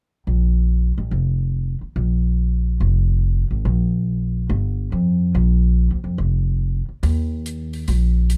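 A swung 4/4 pulse at 142 BPM drives this joyful, brassy big band swing fragment, cut from a longer piece and tuned slightly sharp with A4 at 445 Hz. An up-front pizzicato upright bass with steel strings plays alone from 0.3 seconds, its woody tone ranging from F1 to F2 in a dry, close 1970s-style studio sound. At 7.0 seconds an airy, polished acoustic hi-hat with a touch of hall ambience joins, set well below the bass in level, and both stop at 8.4 seconds.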